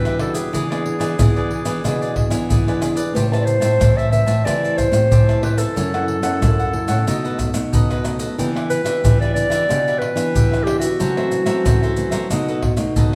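A soft-attacked clarinet carries the melody in a classical style through this nostalgic, bittersweet samba and choro excerpt in E minor at 92 BPM, moving over a minor-key progression that opens on Em9. A crisp, picked cavaquinho and a fingerpicked classical nylon-string guitar fill out the accompaniment, while a second, smaller nylon-string guitar sits in the background playing the bass line. Up front, maracas, pandeiro, tamborim and a tight surdo are played with soft hands, and the whole ensemble is heard from further back in a large, wet studio reverb.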